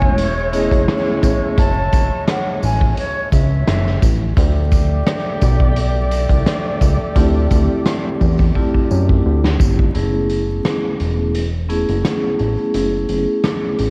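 Boom-bap hip-hop with a tough, moody swing, this excerpt is cut from a longer piece and sits on a cassette-worn bed of vinyl crackle and studio reverb. A raw garage drum kit, gritty and saturated with a rolled-off top, a punchy kick and a medium-tuned snare, drives the groove alongside a thick, detuned analog bass with a fast attack, both placed up front throughout. A distant, pure-toned silver flute carries the melody only until 4.3 seconds, while a tight, vintage saxophone section punches out stabs and a jingly tambourine ticks away in the background. Soft-mallet vibraphone rings with a slow motor vibrato, appearing briefly at the start and returning later in an airy, metallic shimmer. The harmony moves between F#m11 and Dm11, and after a drum fill at 8.6 seconds the track drops into a break at 9.9 seconds, leaving drums, bass and vibraphone to close it out.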